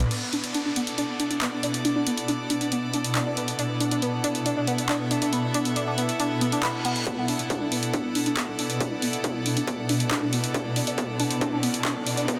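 Set in a moderate, huge ambient reverb and squeezed into a dense, heavily limited modern master, this excerpt of driving peak-time techno moves at 138 BPM in B minor with an industrial, hypnotic mood. An up-front, overdriven techno kit of hi-hats, handclaps, toms and crash cymbal runs throughout, its hats, toms and cymbals pumping against the sidechain in a small room ambience. A gritty, screaming synth lead carries the riff from 0.1 seconds, its saturated, guitar-like tone shaped by phaser, digital delay, vibrato and a filter sweep, while a close, earthy chamber string section bows a bright texture underneath. From 0.8 seconds a swarming, detuned drone adds tension with a granular, wave-folded hum, and a very quiet downlifter, reverse cymbal and riser sit in the background, the reverse cymbal leading into the build-up. At 7.1 seconds a heavy, layered electronic kick drum enters with its own overdrive as the piece moves into a build-up over a constant B minor chord.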